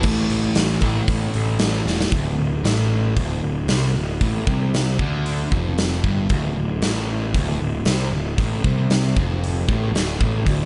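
A straight 4/4 classic rock beat at 115 BPM drives this confident, swaggering passage. A big acoustic kit sits up front, with a punchy kick, medium-tuned snare, hi-hat and bright crash cymbals ringing in a stone room, and a drum fill at 1.9 seconds carries the harmony from A5 to D5 at 2.1 seconds. A growly, fuzz-soaked picked bass sits forward beside the drums, while an overdriven hollow-body guitar and a sludgy distorted guitar play low riffs further back, and a tonewheel organ with key click and a slow rotary speaker holds sustained chords in the background at the start and again at 10.5 seconds, all under a light reverb.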